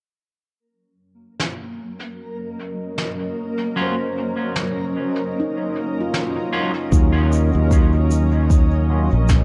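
Spacious and hazy, this excerpt of ambient dub moves at 76 BPM in 4/4 with a swung sixteenth feel, set in E-flat Dorian over an Ebm7 chord, with a dark production and a light, small-room ambience. Brushed snare, tuned high, and shaker enter at 1.4 seconds through a dub echo, soon joined by a reversed, swelling and dreamy granular texture and a cloudy, blurred granular pad holding slow-attack chords, each bathed in its own reverb. At 3.8 seconds a ringing, meditative handpan adds arpeggios through tape echo in the background, while a twangy, slightly broken-up electric guitar plays picked stabs through a low-pass filter and dub echo. The second section arrives at 6.9 seconds with a round, up-front fingered bass and a deep, overdriven electronic kick, the loudest parts in the mix. A filter sweep on the guitar colours this closing stretch as the pad, drums and bass carry on to the end.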